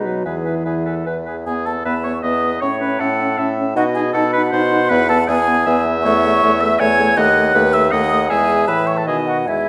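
This quick classical-period movement for wind quintet, cut from a longer piece, moves at 157 BPM in 3/4 with a spirited, lively character and a flexible, rubato feel in E major. An airy, hollow concert flute carries the melody with vibrato and a soft attack, while a warm oboe enters at 0.1 s with a smooth-topped second line touched by light vibrato. A bright, vintage-toned clarinet and a distant, roomy French horn fill in the accompaniment. A clear bassoon sits up front in the bass. The harmony circles E, A and B, colored along the way by an Amaj7/E and a B7/D#, and the ensemble sounds in a recital hall with a generous 1.5-second reverb through to 9.7 s.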